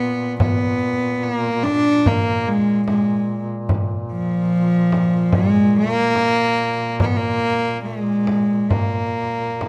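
A clear, nasal cello carries the melody up front, its bowed sul tasto line floating with a soft attack and pure tone in this solemn, longing fragment of a Caucasian folk lament, moving freely in rubato around 72 BPM in 4/4. Beneath it a warm duduk holds a low drone on Bb2 with folk-style vibrato, and from 0.4 s a small, bright frame drum joins under soft hands. Close, detailed microphones capture the trio within a moderate concert-hall reverb that gives the sound a spacious air.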